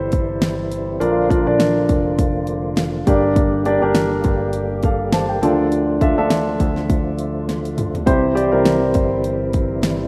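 Dramatic and bittersweet, this piano-driven pop excerpt in D minor moves at 102 BPM with a light sixteenth-note swing: a present, polished grand piano with long sustain carries the accompaniment up front through C, Bb, Gm and Dm chords, while a lightly overdriven tonewheel organ with key click, chorus vibrato and a slow rotary speaker holds sustained chords in the background. Underneath, a warm picked electric bass plays beside a layered electronic pop kit with a punchy kick and fat snare that breaks into a drum fill at 7.5 seconds, all in a rough home-demo mix with light reverb.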